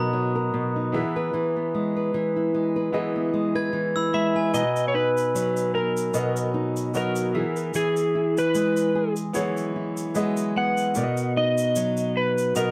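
An electric slide guitar carries the melody from 4.1 seconds, played with fingerpicks and sitting up front with a dark, slightly broken-up tone. This short cut from a longer acoustic pop piece in B major moves at an easy-going 75 BPM in 4/4, with a gentle swing on the sixteenths and a sunny mood. Underneath, a small, fingerpicked nylon-string guitar, also up front, and a clear, natural grand piano provide accompaniment throughout, moving from Bmaj7 to E and back to Bmaj7. At the start, a close-miked glockenspiel struck with hard plastic mallets adds a bright, sparkling, bell-like second line that rings dry and full until 4.7 seconds. A grainy egg shaker, caught in a live room, joins at 4.5 seconds and sits low in the mix. Light reverb and a dark, warm production give the whole a soft glow.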